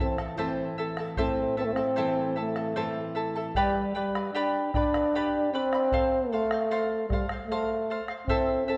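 A mellow trombone carries the melody up front from the first moment, its soft-attacked, vibrato-touched classical phrasing set over a shimmering, fingerpicked charango with double strings and a fingerpicked nylon-string guitar with audible finger squeaks, while a deep, dark bombo enters at 0.2 s. This melancholic, wistful Andean folk fragment moves at 76 BPM in 3/4 through Am, G and F, with a break at 2.8 s, during which the guitar stops at 3.5 s. A moderate concert hall reverb gives the recording a spacious tail.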